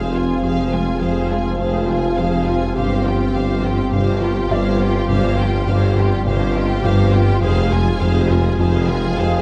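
Drenched in a wet scoring-stage reverb, this vast, tense cinematic cue blends orchestra and electronics, as lush bowed violins carry an expressive vibrato melody over a smooth, even second violin line and portamento violas, mellow French horns and trombones hold very quiet sustained chords beside a warbling, lo-fi tape-like pad, a round, tine-like thumb-piano-like synth pluck plays arpeggios, a felt-muted upright piano adds faint intimate texture, and the low end stacks a smooth gliding synth bass riff, dark cellos, distant double basses, a deep punchy sub bass and a vintage tuba, with the harmony moving from Fm to Csus4/G at 2.8 seconds and back to Fm at 7.4 seconds.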